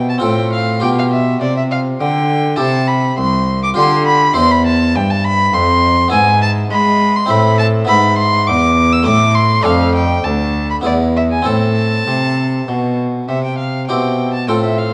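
A baroque-style classical sonata movement for violin, cello and harpsichord continuo, this short passage cut from a longer piece carries a solemn, grave mood in a steady triple metre. The violin carries the melody high in its range with a rich, reedy gut-string tone and light period-style vibrato, sitting up front in the mix. Beneath it, the cello supplies the bass line with a dark, smooth-topped gut-string sound, while the bright, plucked French-style harpsichord fills in the accompaniment. The harmony moves from a major-key opening into the minor around 6.1 seconds, settling onto A minor before turning back to C at 13.3 seconds. The trio plays throughout in a moderate recital hall ambience, and the whole recording has a worn cassette character with warbling tape pitch drift.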